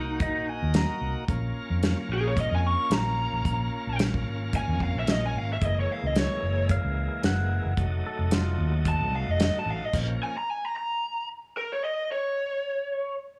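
A gritty, lo-fi lead guitar through a small cranked amp sings the melody up front in this mournful, brooding straight-eighth soul blues at 111 BPM in Bb minor, over a shouting tonewheel organ with slow rotary speaker, a round, punchy foam-muted bass, and a warm soul drum kit with a tight kick and rolled-off top, while a twangy lap steel with tape echo adds volume-swelled slide phrases from 0.2 and again at 6.7 seconds, until the band stops at 9.9 seconds and the overdriven guitar carries on alone in the small, lightly reverberant room.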